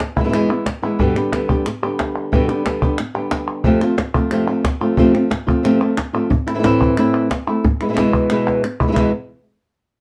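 A fingerpicked flamenco guitar sits up front and carries the melody, ranging from E2 to G4 in a passionate, fiery flamenco cut from a longer piece. It moves through E, G, F and A minor before landing back on E at a brisk 181 BPM in a straight 4/4. A woody cajon with faint snares, played with soft hands and placed close and up front, drives the rhythm beside crisp, dry palmas hand claps mixed lower. A fill arrives at 8.5 s, and the cajon and claps stop at 9.0 s as a short new section opens on an E5 chord, with the guitar ringing on until 9.1 s. A moderate studio reverb surrounds the playing, and the whole recording carries the worn, warbling pitch drift of old cassette tape.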